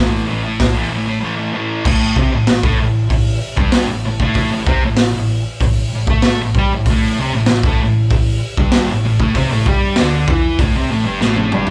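A thick, double-tracked fuzz guitar sits up front playing a distorted riff in this rowdy, raw garage rock cut, a fragment of a longer piece, with a dark, round hollow-body bass tucked in the background beneath it. A gritty, saturated drum kit with a boomy kick and a rolled-off top enters at 0.6 s, drops into a short break at 1.2 s, and closes on a fill at 11.2 s. The whole band sounds like it is playing live together in one room, carried by a moderate large-studio reverb.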